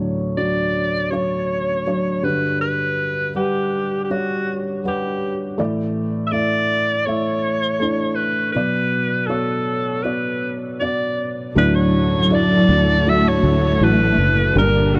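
A felt-muted upright piano opens this heartfelt, hopeful pop piece in D major at 80 BPM, its soft, thick-felt tone sitting up front with audible action noise as it lays down chords moving from Dmaj7 through Gmaj7, Asus4 and Bm. Almost at once, at 0.4 seconds, a bright alto saxophone takes the melody, playing in a vintage jazz style with vibrato and scooped notes, close and prominent. At 11.5 seconds a studio string section slips in behind with bowed, sul tasto sustained chords, soft in attack and gently vibrato. At 11.6 seconds, as the harmony shifts to Dadd9, a dark cello section adds an expressive second line from a distance, while a fingered electric bass enters, round and punchy with a foam-muted, amped directness. The whole has the dry, close feel of a 1970s studio recording touched with light reverb, and it is cut from a longer piece.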